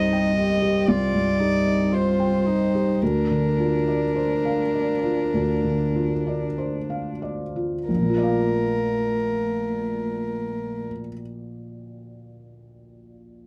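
Neoclassical piano and strings in Bb major, tender and intimate, moving in a rubato 4/4 at 45-60 BPM and slowing down through the first 7.9 seconds of this excerpt. A felt-muted upright piano sits up front with a thick, mellow tone and audible action noise, carrying the accompaniment under a dark, floating solo violin melody and a warm solo cello second line with light vibrato, both strings bowed sul tasto and stopping at 10.9 seconds so the piano finishes alone until 13.5 seconds. The harmony moves from Cm to Bbadd9/D and settles on Bbmaj7 at 7.9 seconds, captured in a dry, close 1970s-style studio sound with light reverb.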